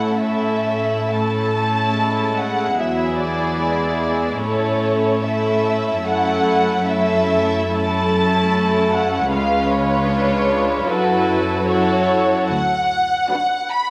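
Unhurried and rubato at 74 BPM in 4/4, this serene, slow romantic movement for string orchestra in A major sets a dark, woody first violin melody over a pure, floating second violin line, an intimate viola accompaniment and a close cello bass that stops at 13.1 seconds, all bowed sul tasto within a moderate scoring stage reverb as chords move from A through E9, F#m7 and C#7 to Bm/D in this fragment of a longer piece.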